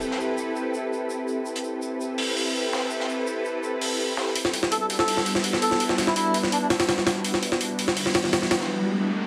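A soft, silky string machine opens this frenetic, dark drum and bass excerpt with warbling, chorused Am9 chords, over a crunchy, saturated breakbeat kit whose high-tuned snare, hi-hat and shaker sound dark and rolled-off in a small room. At 4.4 seconds, as the harmony moves to Em9, a gritty, overdriven sampler-style jungle kit bursts in up front, and moments later a reedy, nasal melodica briefly threads a dub-echoed line through the lush hall reverb. An electronic riser arrives at 8.0 seconds, all beneath a dense, heavily limited master flecked with vinyl crackle.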